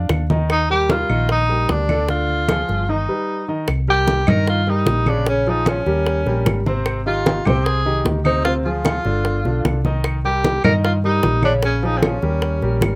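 A clear tenor saxophone carries the melody up front in this lively, danceable Afro-Cuban jazz excerpt at 151 BPM in Eb major, its notes scooped with a soft attack and vibrato, set in a distant, roomy space. Underneath, a concert grand piano supplies intimate accompaniment with deep bass and audible action noise, while a hollow-body short-scale fingered electric bass sits up front with a dark, round, amped tone. The percussion enters at 0.1 seconds: tight, high-tuned bongos sound close and dry, low-tuned congas played with soft hands give a thick-skinned, damped thump in the background, and woody claves add a vintage, band-limited click further back. A brief break at 2.9 seconds on a Gaug chord leads into a new section at 3.7 seconds, where the harmony moves through Cm7, Abmaj7, Dm7b5 and G7 before turning to Eb7. The recording has light reverb and close, detailed microphones, and it is cut from a longer piece.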